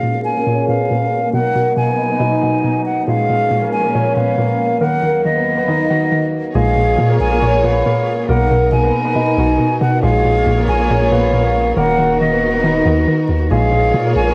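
A thumb-plucked concert harp carries the melody from the first moment in this melancholic, menacing half-time hip hop excerpt at 138 BPM in Bb phrygian. Beside it, an airy, close-miked silver flute plays a second line through tape echo, a bouncy, detuned square-wave pluck with chorus supplies accompaniment, and a lush bowed string section holds chords, with a filter sweep running until 6.5 seconds. At 6.6 seconds a deep, long sine 808 bass enters as Bbm7, Bmaj7 and Ebm chords cycle over light small-room ambience and vinyl crackle.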